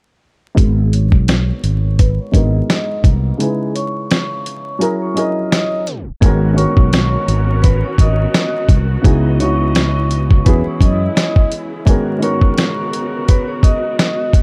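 Tough yet reflective, this boom-bap hip-hop excerpt in G# minor rides a swung 85 BPM groove, with a gritty, sampler-style drum kit (thumpy kick, fat snare, hi-hat) and a warm fretless electric bass up front. A dark, woody upright piano with cassette-tape colour comps under a ringing, metallic vibraphone melody carrying slow motor vibrato and delay, while a filter sweep and a break lead to a tape stop at 5.9 seconds. From 6.2 seconds a lush, bowed string section adds smooth sustained chords over richer minor-eleventh harmony, the bass drops out at 11.1 seconds, and small-room reverb and vinyl crackle give the whole a dusty, dark feel.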